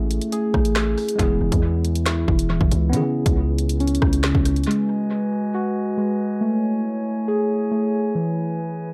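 Muted, chorused felt-like synth keys play dark arpeggios over a worn, slightly out-of-tune tine electric piano and a distorted, heavy 808-style bass, joined at once by an up-front drill drum kit with a hard-clipped kick, woody snare, handclaps and tape-echoed hats, before the piano, bass and drums drop out at 4.7 s and a glassy, ethereal glass harmonica takes over with slow-attack sustained chords beside the keys in this ominous, cold half-time drill excerpt at 138 BPM in G# phrygian, all set in an echo-heavy digital ambience.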